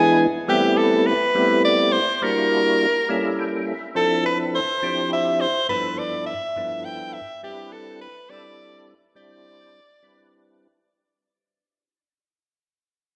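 A clear soprano saxophone with soft-attacked vibrato carries the melody up front, its tone touched by slapback and tape echo, over a fat, percussive tonewheel organ with key click, chorus vibrato and a slow rotary speaker that adds a fill at 3.1 s, in this funky, slick jazz fragment in 6/8 at 69 BPM in C major, moving from Am9 through A7b9 and G13 to Cmaj9, heard as a live gig through the venue's PA with plate and recital hall reverb as it fades out across its brief span.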